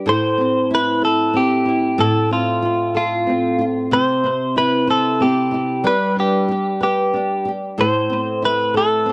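A fingerpicked flamenco guitar opens this short excerpt of a tender, heartfelt pop ballad in 6/8, moving at an unhurried 62 BPM counted in dotted quarters with a straight feel. The acoustic guitar is warm and up front, double-tracked for a fuller body as it carries the accompaniment across a range from A2 to C5. Almost at once, at 0.1 seconds, a clean electric guitar recorded direct takes the melody, its bright, compressed, picked tone sitting between F4 and C5 and coloured by analog chorus and tape echo. The harmony moves from Am through F/A, C and G before settling back on Am at 7.8 seconds, with both guitars playing through to 9.1 seconds. The sound is dry and close, in the manner of a 1970s studio, with only light reverb, and the tuning sits slightly low at A4 = 437 Hz.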